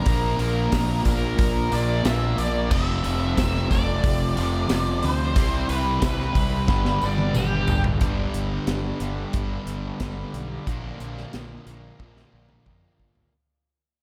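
Heard through light reverb and a small room ambience, this classic rock excerpt from a longer piece has a swaggering, sunny mood and a straight four-four feel. An up-front acoustic kit with a punchy kick and medium-tuned snare drives a chord progression moving from Bb through F, C and G. A growly fuzz bass joins two overdriven guitar riffs that sit back in the mix, one sludgy and the other bright. A dark octave-fuzz lead guitar carries the melody through wah, distortion and slapback echo, over a very quiet, round tonewheel organ with key click and a slow rotary speaker, plus a jingly, close tambourine. The lead and tambourine stop at 7.8 seconds and the organ at 8.0, as the band continues its riff under a fade-out. A drum fill closes out the fading section from 12.0 seconds.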